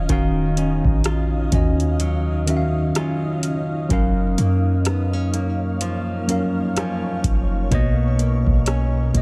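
Set in a digital ambience, this brief cut from a longer contemporary R&B piece moves at a slow 63 BPM in Eb minor with a swung sixteenth feel, its mood longing and sensual over the chords Ebm9, Gbmaj7 and Bmaj9. A worn, slightly out-of-tune tine electric piano sits up front beside a boomy, sine-toned 808-style bass. Around them, a blurred, evolving granular pad glows inside its own reverb, a dark, fingerpicked nylon-string guitar plays arpeggios through delay with finger squeaks on its fresh strings, and from 0.1 s a booming analog drum machine adds a deep kick, metallic hi-hats and rim clicks with a tape-warm edge.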